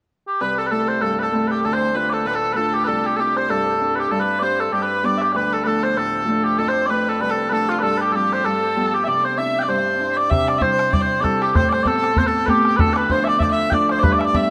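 Celtic folk reel, rollicking and bright at 194 BPM with a swung feel in C major, where sweet, mellow small bagpipes with vibrato carry the melody up front, a nasal, distant bowed fiddle plays a second line beneath, a ringing fingerpicked Celtic harp supplies up-front accompaniment, and a boomy, dry bodhran joins at 10.3 s, all set in a moderate plate reverb with a rough home-demo sound.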